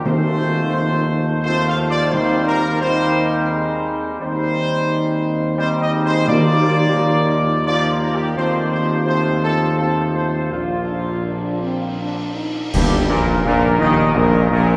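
A dark, distant trumpet section carries the melody from the opening over clear trombone and shadowy French horn chords, with a warm tuba bass up front, in this triumphant, regal classical fanfare in Eb major, moving at 86 BPM in a stately 3/4. Very quiet timpani on medium mallets mark the phrases, while a bright cymbal swell, clash cymbals and concert bass drum enter at 8.4 seconds, close and dry against the brass. The whole band lands a strong accent at 12.7 seconds as the harmony settles on Eb/G, and a long cathedral reverb lets the sound ring through the church-like hall in this fragment cut from a longer piece.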